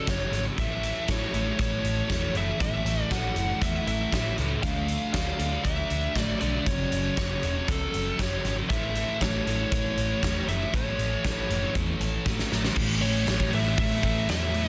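Blissful and hazy, this short shoegaze and dream pop excerpt in A major moves at a straight 118 BPM. A double-tracked fuzz guitar riff, thick with lush chorus, sits up front beside a huge arena kit with a fat snare and punchy kick, while a dark, foam-muted electric bass adds round low weight. A compressed fuzz lead guitar sings its melody through analog delay, and a drum fill at 12.3 seconds ushers in a new section at 12.8 seconds within a dense, heavily limited master.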